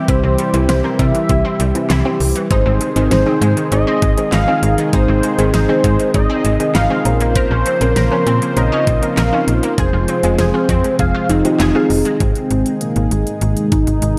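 Soaked in lush hall reverb, this dreamy, cool, nocturnal synth-pop fragment at 99 BPM sets a thick, detuned sawtooth lead with tape echo and vibrato over a smooth, chorused analog pad, a bright, punchy unison pluck playing arpeggios through tape echo, a soft, round pluck in accompaniment, a snappy, metallic FM bass up front, and a pop drum kit of knocking kick, fat snare, crisp hi-hat and handclaps, moving through C, Ab, Bbmadd9 and Fm before both plucks drop out by 12.2 s and the remaining parts settle on Ab.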